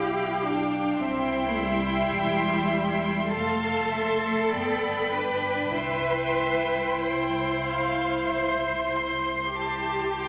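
Rubato and slow in 4/4 at roughly 46-55 BPM, this tender, lyrical fragment of a romantic movement for string orchestra in C major moves from a G7/B chord to C, F, G and back to C by 5.8 seconds. Two violin sections, one singing the high melody and the other a second line beneath it, play sul tasto with light vibrato and a soft, intimate attack, while the violas add expressive portamento in the accompaniment. The cellos carry a bass part with soft attack and vibrato, and a smooth, even, rich-toned double bass section sits lower still, all held in the generous, wet reverb of a scoring stage.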